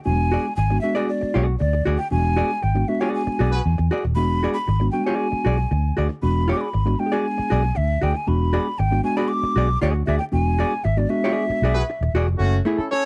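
Vinyl crackle and light reverb frame this gritty, funky passage cut from a longer piece, where an airy metal flute with vibrato and a crisp, chiffy attack carries the melody over worn, slightly out-of-tune electric piano stabs, a round, dark, foam-muted fingered bass sitting up front, and clean picked hollow-body guitar accompaniment, while a distant, roomy horn section with light vibrato adds a brief second line at 3.5 seconds and returns at 11.7 seconds.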